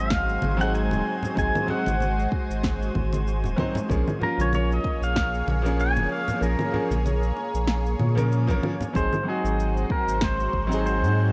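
A wistful sunset chillout fragment at 95 BPM with a lightly swung 16th feel opens on an Ab7 chord as a clean, fingerpicked electric pedal steel guitar sings the slide melody through digital delay over a brilliant, long-sustaining grand piano, a thick detuned unison pad treated with chorus and phaser, a round, up-front sub bass and a very quiet glassy harmonics texture of drifting overtones, while overdriven electronic drums with a deep kick, punchy snare, shaker and congas join alongside hard-handed, saturated congas and bongos. The harmony moves to Bbm7 at 3.9 seconds, and the kick drops out from 6.4 to 8.9 seconds before the return to Ab7, all set in a light digital ambience.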